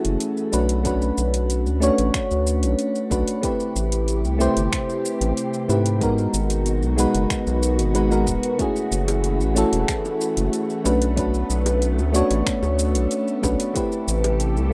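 Relaxed and wistful, this sunset chillout excerpt moves at 93 BPM in a straight 4/4, with an up-front, mellow FM electric piano carrying chorus, digital delay and shimmer reverb over a round, wave-folded analog bass and a silky string machine sitting in the background with phaser, ensemble chorus and 12-bit sampler grit. A deep house drum kit of finger snaps, metallic hi-hat and shaker runs under overdrive, joined by an overdriven electronic kick from 0.9 seconds and tight, high-tuned bongos from 9.1 seconds. Minor ninth chords drift from F#m9 through Bm9, Am9 and G#m9 in a rough home demo mix with light reverb.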